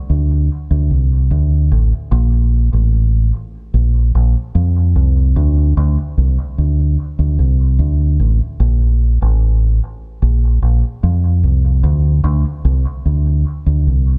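Hypnotic and meditative, this reggae excerpt features a solo deep dub bass line played on a fingered electric bass, its dark, round and punchy tone sitting up front in a moderate echo-chamber reverb from 0.1 seconds to the cut at 14.2 seconds.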